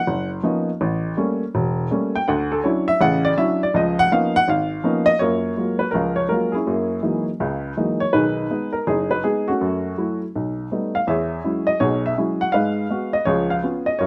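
Playful and sophisticated, this short solo jazz piece, cut from a longer piece, swings in 4/4 at 164 BPM in F# major, carried entirely by an upright piano ranging from E1 to G5. The piano sounds woody, slightly detuned and up front, with short sustain, captured by close, detailed microphones in a dry space. Rich chords such as Bmaj9#11, C#13 and Baug7 colour the harmony, and the second section begins at 5.2 seconds on F#maj9.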